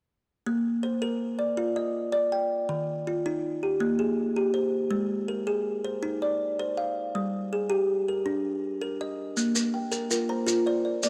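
Warm and hypnotic, this excerpt from a longer piece is a southern African traditional, mbira-style interlocking cycle in 12/8 at 108 BPM, set in Bb mixolydian with a straight feel. A kalimba opens at 0.5 seconds with arpeggios across a range from Eb3 to G5, its thumbnail pluck bright and woody, close and dry yet full and ringing in the foreground. The harmony moves through Bb, Eb, Ab and G minor before returning to Bb at 9.4 seconds, when grainy, mellow maracas arrive with a vintage, band-limited acoustic character. A second kalimba joins at 9.6 seconds, its softer thumb-plucked arpeggios spanning Bb3 to Bb5 with a hollow, boxy small-room tone. A moderate plate reverb with a 3.6-second tail surrounds the recording, which runs to 11.1 seconds.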